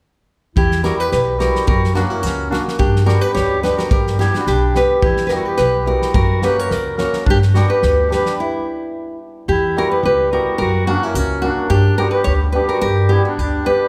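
A straight two-beat pulse drives this Balkan wedding-band folk piece, cut from a longer performance, with a bittersweet yet virtuosic mood. A bright, fingerpicked nylon-string guitar carries the melody up front, while a distant, roomy clarinet in classical style traces a second line beneath it. A shimmering hammered dulcimer fills in the accompaniment, a woody pizzicato upright bass anchors the low end, and a loose kit with a fat snare and tight kick supplies the beat. The harmony cycles through Em, F# and G until the band halts on a stop from 8.4 to 9.5 seconds. The drums drop out at 8.3 seconds and stay silent as the tune restarts its opening section, with the ensemble heard from further back in a moderately reverberant scoring stage.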